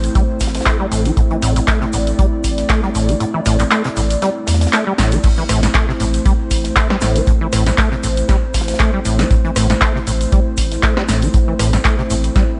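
A rubbery, resonant acid bass riff, overdriven and echoing on tape, drives this hypnotic, gritty acid house excerpt over a round sine sub bass, a moody detuned analog pad holding an A minor chord, a punchy analog drum machine with crash, claps, hats, rim and snare, a deep up-front electronic kick that drops out from 3.2 to 5.2 seconds before a fill and the drop, a very quiet airy studio kit, and a grainy, distant tube shaker.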